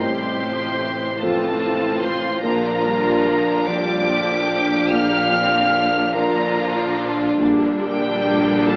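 A rich, distant violin section carries the high melody of this slow, rubato cinematic excerpt in 6/8 at 49 BPM, joined by a clear second violin line and a mellow solo clarinet, while a soft felt-muted upright piano, lush violas, sustained French horn chords, ringing thumb-plucked harp arpeggios, focused cellos and smooth double basses hold the F/A, Bb and Gm/Bb harmony in a longing, sorrowful mood, set in a stone-room reverb with an AM-radio tone.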